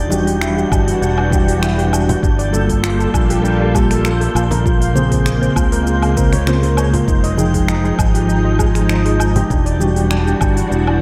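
A dreamy, reverb-soaked mix with a faint mains hum carries this wistful sunset chillout piece, where silky, warbling string-machine chords and a mellow tine electric piano sit over a round, up-front fingered electric bass; a shimmering steel pan plays arpeggios through analog delay and shimmer reverb; an airy, wind-like tuned noise texture hangs high above; and a deep house kit of smooth hats, finger snaps, shaker and woodblock joins very quiet, soft-handed congas, with a deep electronic kick entering at 0.7 s, as the chords move from Em9 through Gm9, Bbm9 and Fm9 back to Em9.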